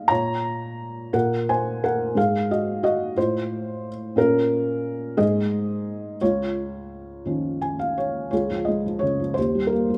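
In a 6/8 at about 58 dotted-quarter beats per minute, played with free rubato, this peaceful classical passage in Db major features a felt-muted upright piano alone, ranging from deep bass notes to a soft upper register. The instrument sounds dark and intimate, its thick felt dulling the hammers while the mechanism's action noise stays audible through close, detailed miking and light reverb. The harmony drifts from Bbm through colorful extended chords to a Dbadd9 at 6.2 s; a brief piano fill at 7.3 s leads into a new section at 8.3 s before this short fragment of a longer piece breaks off.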